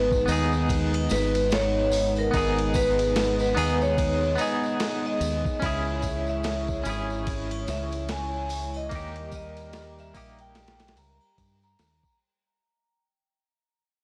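A swung 73 BPM trip hop groove in G# harmonic minor sets a cinematic, hypnotic mood, as a gritty, thumpy sampler-style drum kit and a round, up-front dub bass carry a ringing vibraphone melody with slow motor vibrato and tape echo, a twangy clean electric guitar with tremolo, sampler grit and tape echo that stops at 10.9 s, a detuned sawtooth pad with chorus, and soft tambourine and triangle in the background, all through a blown-out, overdriven recording with vinyl crackle and light reverb that fades out from 3.4 s as the chords move from G#m to C#m to D#.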